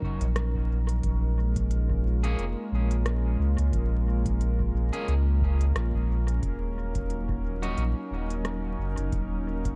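Crackling vinyl surface and heavy echo fill a dry mix in this fragment of a meditative, spacious ambient dub piece, moving at 89 BPM in 4/4 with a swung sixteenth feel, in E-flat minor tuned to A4 = 442 Hz. A round, sine-like sub bass sits up front, deep and sustained, while a nostalgic, lo-fi pad of detuned sawtooth and triangle tones fades in slowly and warbles under chorus and its own reverb, holding mellow chords that move from Ebm7 to Bbm7 and back to Ebm7. Far behind, an analog electronic kick with a tape-warm tone sounds as if re-recorded in a large room. From 0.2 s a produced electronic kit adds crisp hi-hats and rim clicks, captured in a small room and trailed by dub echo. Between 2.2 s and 7.8 s, a twangy, slightly broken-up electric guitar plays picked stabs, each one repeating through its own dub echo.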